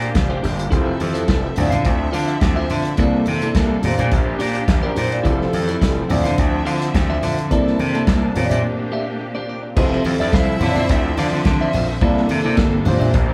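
Disco at 106 BPM in F major, glamorous and celebratory, with a gritty overdriven slap bass and a muffled, dry soul drum kit up front, while a clean, compressed electric guitar with a warbly pitch drift and a worn baby grand piano with long sustain accompany the Bb69, Fmaj7, Dm9 and C13 chords. Clear, bowed strings hold sustained chords in the background alongside low-tuned congas, and after a break at 8.6 s a rich violin section adds a second line from 9.8 to 11.4 s. The band sounds as if playing live in one room, wrapped in a wet large-studio reverb, in an extract cut from a longer piece.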